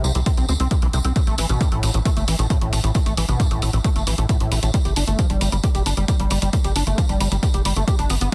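Uplifting trance with a euphoric, driving mood, heard in a brief excerpt cut from a longer piece. A tight, punchy sequencer bass with a mellow sawtooth and square-wave pluck sits up front, pumping against an electronic kick that enters at 0.3 seconds. A squelchy, resonant acid line carries the arpeggios with chorus, delay and sidechain pumping, while a punchy analog drum machine adds crash cymbal and hi-hat and a jingly tambourine rounds out the percussion in a dense, heavily limited modern master.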